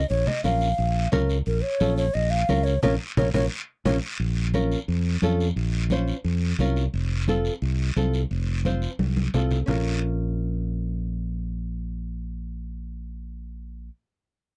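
This cumbia excerpt moves at a danceable 175 BPM in a straight 4/4, with a passionate Bb harmonic minor colour and a chord motion from Bbm to F and back to Bbm. A breathy, round clay ocarina carries the melody between Bb4 and F5 until 4.0 seconds, its crisp, chiffy attack and vibrato lifted by airy highs, with a band accent landing near its close. Underneath, a bright fingered electric bass sits up front with a direct, amped tone in the low register for the whole excerpt. A dark, woody nylon-string guitar, fingerpicked on old strings, plays accompaniment between C4 and C5, also up front. Thin-skinned, damped congas in the background and a raspy guiro drive the groove until 9.8 seconds. The dry, close studio sound recalls a 1970s session, with little reverb around the parts.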